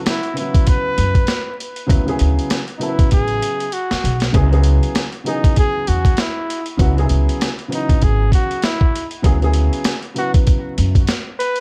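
A close-miked flugelhorn carries a vibrato-laced jazz solo through tape echo over long-sustaining, woody upright piano chords moving from a rootless D69 to C#m7 and back, while a gritty, compressed sampler-style boom bap kit with a thumpy kick and high-tuned snare sits up front and plays a fill at 3.1 seconds, and a dark, pizzicato upright bass on gut strings joins at 1.0 seconds, giving this smoky, mellow 98 BPM jazz-hop excerpt a dry, swung feel beneath a layer of vinyl crackle.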